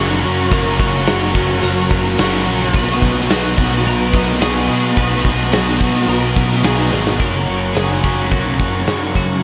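A straight 4/4 beat from a gated 80s drum kit, with its tight kick and bright cymbals up front, drives this hazy, dreamy shoegaze and dream pop rock excerpt, where a biting overdriven guitar riff with reverse reverb sits forward over a thick fuzz guitar riff in the background, a round, punchy overdriven bass, twangy arpeggios from a clean twelve-string electric guitar trailed by diffuse ambient delay, a lush, detuned unison pad holding sustained chords, and a jingly tambourine, all bathed in cathedral reverb, until a drum fill at 6.9 seconds leads into a new section at 7.2 seconds.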